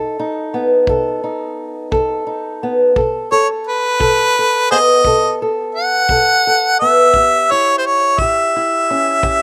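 Acoustic country blues with a swaggering, laid-back 12/8 feel, where a dark, boxy fingerpicked ladder-braced guitar sits up front over B7 moving to A7, a smooth, punchy kick drum played with brushes enters at 0.9 seconds, and a clear, jazz-style harmonica takes the lead at 3.3 seconds with light vibrato, scooped notes, tongue slaps and a soft attack, all in a dry outdoor recording with lossy compression artefacts, cut from a longer piece.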